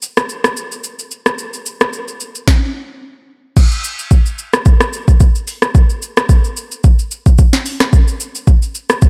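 A smooth R&B drum kit opens this deep, late-night amapiano excerpt at 110 BPM with a lightly swung 16th-note feel, its soft kick, sharp snare, rim click, shaker, crash cymbal and warm hi-hats sitting up front with an overdriven, electronic edge and a small-room character in light reverb, before a drop arrives at 3.6 seconds and carries through to 9.1 seconds.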